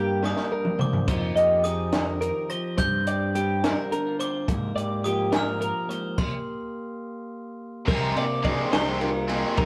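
A sparkling glockenspiel struck with brass mallets carries the melody in this wistful, intricate math rock and midwest emo excerpt, set in C minor and 6/8 at 70 BPM. It rings above a twangy, clean twelve-string electric guitar playing arpeggios, a slightly broken-up guitar through a small old amp, a growling fingered bass with a gritty drive, and a compact cocktail drum kit with dark cymbals, a high-tuned snare and a punchy kick, all heard in a rough rehearsal-room recording with moderate stone room reverb. The drums open with a fill at 0.2 s and the band hits a stop at 6.2 s, and at 7.9 s a biting, double-tracked overdriven guitar riff enters up front as the harmony moves to Ab69/C.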